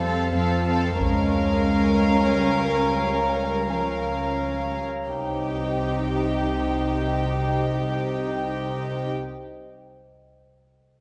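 A cut from a longer suspense film score in C phrygian at 90 BPM in 3/4, this uneasy, mysterious cue opens with floating, sul tasto violins carrying a high melody and a second line over dark, lush violas, a glassy, ethereal glass harmonica holding beating chords, cellos and double basses in the background, an eerie metallic drone with chorus and its own reverb, and a barely audible ringing harp, while a close, dry taiko ensemble strikes with hard sticks from 1.0 to 2.3 seconds before the harp drops out at 5.1 seconds as the harmony moves to C minor, all set in a moderate scoring-stage reverb.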